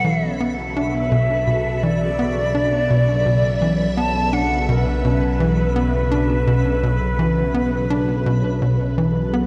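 Ambient, sequencer-driven space music in B minor at 84 BPM, this mysterious, cosmic excerpt sets a hollow, up-front concert flute melody with vibrato and analog delay over a tight, nasal sequencer bass riff with delay, a swirling, vintage string machine holding a Bm7 chord through ensemble chorus and phaser, a detuned analog drone on B1 with chorus, and a faint twinkling granular shimmer in the background, all bathed in a lush hall reverb.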